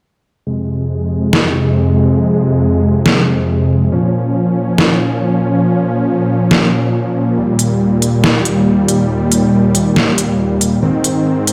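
Huge, detuned supersaw chords lead this heavy, aggressive wobble dubstep fragment, entering at 0.5 seconds with lush, full-bodied sawtooth unison stacks that sit up front and hold sustained through a low-pass filter sweep. The harmony moves through Fm, Bbm, Eb and Ab in F minor, spanning Eb2 to Db4 with a fast attack on each chord. At 1.3 seconds an electronic, layered dubstep kit joins in half-time at 139 BPM, its deep snare and crisp hats placed up front with a tape-warm, produced character and studio reverb. The whole track sounds as if played on a big sound system in a bare room, wrapped in a moderately lush digital hall ambience. Cut from a longer piece, it runs as a single continuous section until 11.5 seconds.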